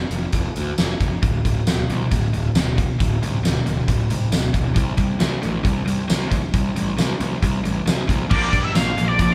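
Classic rock with a swaggering, confident strut at 135 BPM, this short excerpt opens on a growly fuzz bass and a big, dark drum kit with a fat snare, punchy kick and tambourine, joined at 1.2 seconds by a bright, cranked stack guitar riff moving over D5 and C5 power chords, before a dark, up-front octave-fuzz lead and a very quiet, biting overdriven guitar arrive together at 8.3 seconds on a Bb5 chord, all captured with light reverb as a band playing live in one room.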